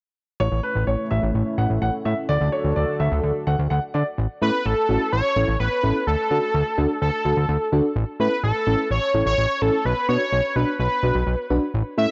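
An upbeat, nostalgic pop passage in A major at 127 BPM opens at 0.4 s with a warm baby grand piano playing an open, up-front second line through analog delay, over sustained chords from a shimmering, nasal chorused pulse-width pad and a fat, saturated analog bass that holds the low end to the close. At 4.4 s the piano and pad give way to a thick, bold unison lead carrying the melody with vibrato and analog delay, while a mellow, round FM electric piano with chorus fills in the accompaniment as the chords move from A and D to B minor. The sound is dry and gritty with a light reverb and a hardware-recorded top end that stops at 7.7 kHz.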